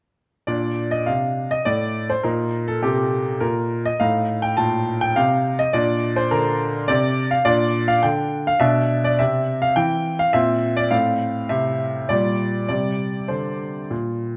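A clear, intimate baby grand piano plays alone from 0.5 to 14.4 seconds in this cheerful, graceful classical-period sonatina in Bb major at 103 BPM in 3/4 with a rubato feel, sitting up front with audible action noise in a moderate recital hall reverb as it moves from Bb through Eb/Bb, Am7b5 and C7/Bb toward F/A and Gm/Bb in a brief cut from a longer piece.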